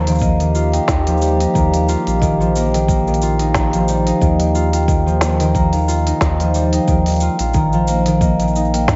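This pastoral folktronica excerpt in Eb major opens on an Ebadd9 chord. Fingerpicked concert harp arpeggios ring up front, joined by a round, nasal analog bass, a smooth, metallic vibraphone second line played with medium mallets and motor off, and a warbling, detuned tape-like pad that sustains chords in the background through chorus and its own reverb; the harp and vibraphone both carry tape echo. At 0.1 s an organic electronic kit adds woody snare, crisp hi-hats and shaker, and a deep electronic kick joins at 0.2 s, both re-recorded in a large room, settling into a lightly swung 90 BPM groove in 4/4 within a dry mix dusted with vinyl crackle and a dulled top end.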